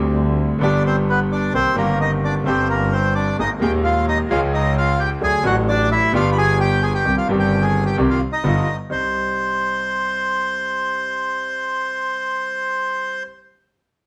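Dramatic and sultry, this rubato tango excerpt in C minor at 130 BPM sets a dark, reedy bandoneon melody up front over a clear, deep-toned concert grand piano and a single bowed double bass with gut-string richness and light vibrato that drops out at 9.1 seconds, all heard as a band playing live in one room with wet studio reverb.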